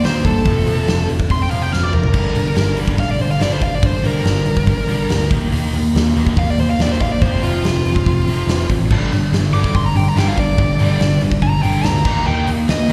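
A dark, distorted lead guitar solos over a tight distorted riff guitar, a growly, punchy picked bass and an up-front drum kit with a fat snare and punchy kick in this aggressive, menacing hard rock excerpt at 142 BPM in G minor, where a drum fill at 1.7 seconds brings in a very quiet, gritty tonewheel organ on sustained chords through a slow rotary speaker, a cranked stack guitar joins the riff at 8.9 seconds, and the whole sounds like a live gig heard through the venue's PA with recital hall reverb.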